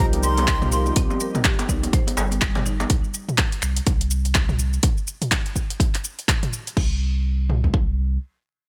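A deep house kit of metallic hats, snaps, claps and shaker opens this spiritual afro house excerpt at 124 BPM with a swung 16th feel, soon joined by a punchy, up-front house kick kit, both in a small room, while a round sine sub bass holds the low end under sidechain pumping. A breathy jazz flute with vibrato sings a brief high line through tape echo, a djembe struck with hard hands adds percussion, and woody marimba arpeggios, dark synth-brass stabs and a smooth chorused analog pad sit in the background over an Ebadd9 chord. The drop runs from the start to 6.8 seconds, after which the harmony falls away and the sub bass carries on until 8.2 seconds.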